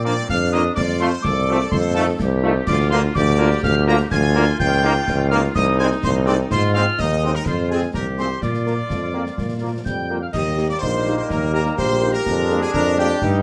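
A straight 2/4 pulse at 125 BPM drives this spirited, proud military-style march for wind band in Eb major, cut from a longer piece, with a clear trumpet section carrying the melody over sustained chords from a vintage-toned trombone section, soft-edged mellow French horns in the background and a warm tuba up front on the bass. A pure, expressive piccolo with vibrato and a distant, roomy woodwind section add second lines, joined by a solo euphonium from 8.9 seconds, while concert snare drum, concert bass drum and dark-toned clash cymbals sit in the background. Light reverb gives the band a gentle sense of space.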